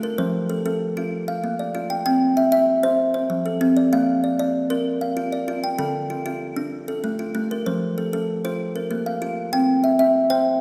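A solo kalimba, woody and ringing with a bright thumbnail pluck and a hollow-box body, plays a rippling southern African traditional mbira-style interlocking cycle in F major at 128 BPM in 12/8, moving through F, Bb, C and Dm before a second section begins at 7.7 seconds, all heard up close within the long, wet reverb of a church or concert hall in this short, warm cut from a longer piece.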